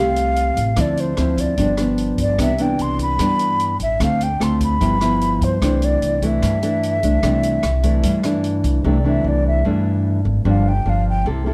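A sunny, romantic bossa nova clip at 149 BPM in C major, cut from a longer piece, where a breathy, mellow concert flute with vibrato and a crisp attack sings the melody over a thumb-plucked nylon-string guitar that sits up front with a classical touch. A woody, growly pizzicato upright bass anchors the low end, while an open jazz kit adds hi-hat, rim click and a boomy kick in a natural small-room sound, all under moderate studio reverb. The drums stop at 8.7 seconds, and from 8.8 seconds the expressive flute takes a solo over guitar and bass as the chords move from lush ninths toward a closing Gm7.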